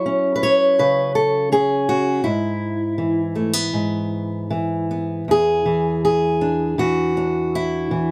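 A fingerpicked steel-string acoustic guitar plays alone, up front and close-miked with little reverb, in this short, nostalgic yet hopeful folk excerpt with a rubato feel around 76-83 BPM in 4/4, ranging from E2 to C#5 as it moves from F#5 to E/G# before settling onto E7 at 5.3 seconds.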